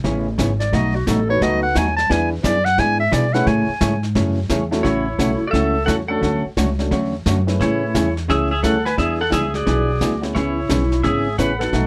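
A twangy pedal steel guitar, played with fingerpicks and shaped by volume swells and slide, takes the melody from 4.8 seconds in this down-home, playful western swing cut in A major at 174 BPM. Before it, a breathy clarinet with vibrato and scooped notes solos from 0.6 seconds, then carries a second line. Underneath, a dark, compressed hollow-body jazz guitar, a woody, thumpy pizzicato upright bass on gut strings and a warm brush kit with a punchy kick and a rolled-off top anchor the swung groove from the start. An upright piano with long sustain joins them at 1.3 seconds, all in light reverb.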